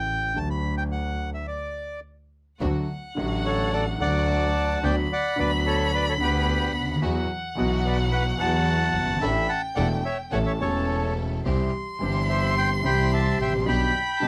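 A reedy, bright bandoneon opens this passionate, nostalgic tango fragment, carrying the melody up front over an intimate concert grand piano with deep bass and audible action noise, and a clear, bowed double bass with light vibrato and a smooth top. The rubato feel gives the phrasing an elastic, yearning quality, and the music halts briefly at 1.5 seconds before resuming at 2.6 seconds. At that point a distant solo violin joins with a second line, its expressive vibrato and portamento touched by a slapback echo. At the same moment a lush symphonic string section adds bowed stabs from the background. The harmony moves from D through Bm/D, Esus2 and Asus4 to A, then shifts to C and G/B. Light reverb and close, detailed microphones capture the ensemble.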